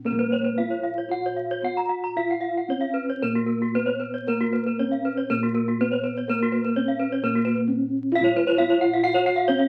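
Balinese gamelan in Bb pelog, a ceremonial, shimmering fragment at 114-134 BPM in straight 4/4, where a mellow, soft bronze metallophone struck with padded disc mallets carries the melody up front, bossed gongs supply a round, beating bass close-miked and dry, and two horn-mallet metallophones ring out bright arpeggios with the paired tuning's shimmering beats, all heard through wet studio reverb and the crackle of a very old 78 rpm record, with a new section arriving at 8.2 seconds before the cut.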